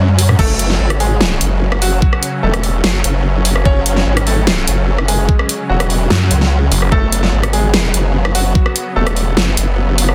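Aggressive and chaotic, this half-time heavy wobble dubstep excerpt opens on a drum fill before a knocking, overdriven electronic kick and a dubstep kit with a huge snare and bright hats pound up front, while a detuned, chorused formant-sweep wobble bass churns beneath a clear, worn concert grand piano melody with delay, lush supersaw chords pumping in the background, and a snarling, growling distorted saw bass bursting in briefly from 6.1 to 6.9 seconds, all inside a dense, heavily limited digital ambience.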